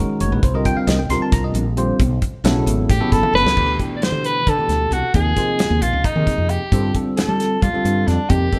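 Electric jazz fusion in a nocturnal, slick 7/8 at 267 BPM, where a barky, bell-like tine electric piano with phaser and a woody, round fretless bass open over a damped 70s drum kit with dark cymbals, an electric piano fill at 2.9 s and a drum fill at 3.2 s lead into D phrygian at 3.6 s, and a clear, forceful soprano saxophone with light vibrato, entering at 2.9 s, carries the melody up front in a moderate stone room.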